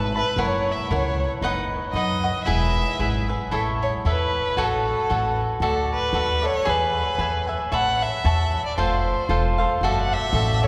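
A single bowed violin stands out front, its rich, focused tone carrying the melody with vibrato across a short stretch lifted from a longer piece. This is festive, romantic mariachi-flavored Mexican folk in 2/4, with a swung, rubato feel that lets the phrasing breathe. A crisp, bright cavaquinho, picked and placed up front, supplies the accompaniment throughout. Underneath, a pizzicato upright bass with steel strings gives a woody, thumpy low end. The harmony passes through chords such as F#7, E, Dadd9 and an unexpected F before settling on Dadd9/F#. The whole recording sits in a lush cathedral-like reverb, as if captured in a church or concert hall, with a long decay of 6.7 seconds.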